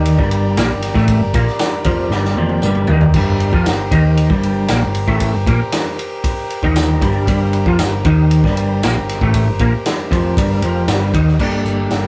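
A bright, clean guitar riff through a rotary speaker sits up front in this trippy, mysterious psychedelic rock excerpt in G minor, playing over reedy, breathing pedal harmonium chords and a round, dark hollow-body bass at 116 BPM in a straight 4/4. A vintage kit with a punchy kick and dark cymbals drives things along, with a drum fill at 2.1 seconds, while a jingly tambourine stays close and dry in the background. The whole has the lightly reverberant feel of a rough rehearsal-room recording, holding on G minor before shifting to Gmadd9 at 11.4 seconds.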